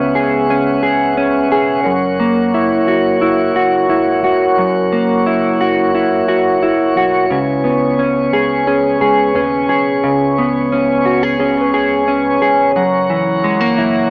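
A clean, dark electric guitar, fingered up front through analog chorus and tape echo, spins arpeggios through this melancholic, ethereal dream pop excerpt at 88 BPM in C# dorian, moving between C#m7 and F#7. A flute-like tonewheel organ with key click holds sustained chords on a slow rotary speaker, while a glossy, retro chorused synth bass sits deep in the background and a very quiet FM synth bell adds a pure, decaying texture with phaser from 3.2 to 13.2 seconds. Light digital ambience surrounds a dry, gritty hardware recording with a small-speaker sound, cut from a longer piece.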